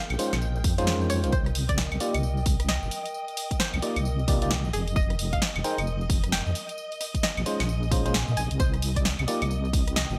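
Opening on a twangy, string-like resonator pluck melody over silky string-machine chords with vintage sampler grit and a nostalgic, lo-fi tape-like pad pumping in the background, this bouncy, moody two-step UK garage excerpt at 132 BPM in C phrygian soon adds a deep, wobbling bass with tube saturation, a punchy up-front house kit of claves, hi-hat, rim click, snare and tambourine with gated reverb, glassy bell-like FM electric piano stabs through digital delay, and a layered electronic kick from 0.6 seconds, all moving through Bbm11, Cm11 and F9sus4 in a bright 1980s-style digital production.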